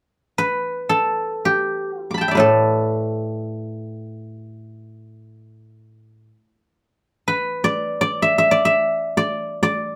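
Elegant and flowing, this Chinese traditional solo for guzheng unfolds in free time in the A shang mode, a short passage cut from a longer piece. The guzheng enters at 0.4 seconds and carries on to the end, its fingerpicked strings ringing out with a silvery, mellow tone across a range from A2 to D6. Placed up front, the instrument sits in a moderate studio ambience that lends a natural sense of room.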